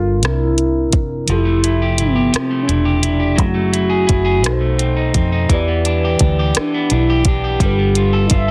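A horn-like synth lead opens this slow, intimate R&B fragment in six-eight, carrying the melody with a round, full-bodied sawtooth tone, soft attack, vibrato and a filter sweep, thickened by chorus and tape echo. Beneath it, a mellow tine electric piano plays clean accompaniment through its built-in speakers, while a vintage foam-muted fingered bass sits dark and punchy in the low end. At 0.2 seconds a produced electronic R&B kit enters up front with hi-hat, soft kick and rim click, its snare touched by soft clipping. At 1.3 seconds a slightly broken-up electric guitar adds a picked, compressed second line, and the kick drops out until 3.4 seconds. The chords move from C7 through Fmaj9, F#m9 and B7b9 to Em7 and G9 under light reverb, and the dense, heavily limited modern master keeps the tender mood close.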